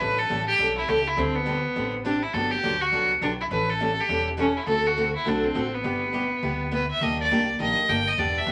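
A clear, earthy fiddle sits up front with the melody, bowed by a single player with a light vibrato, in this cheerful, down-home slice of western swing cut from a longer piece. It moves at a brisk 206 BPM in 4/4 with a swung eighth-note feel, in G major. A bright, picked parlour-style steel-string acoustic guitar shares the foreground as accompaniment, while a woody, warm pizzicato upright bass plays lower in the mix. The harmony travels through A7, D7sus4, Gmaj7, A7, D7 and G6 before shifting to an Ebmaj7 at 7.0 s for a brief new passage. A wet studio reverb surrounds the trio, and vinyl crackle gives the recording an old-record patina.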